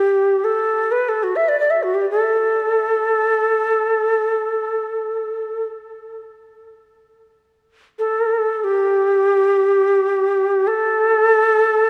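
Haunting and meditative, this 11.9-second excerpt of world music drifts in free time as a solo Native American-style cedar flute, breathy and reedy with rolled-off highs, sits up front, its tongued notes carrying a woody chiff and vibrato between F#4 and E5, lengthened by a delay and bathed in a wet recital-hall reverb.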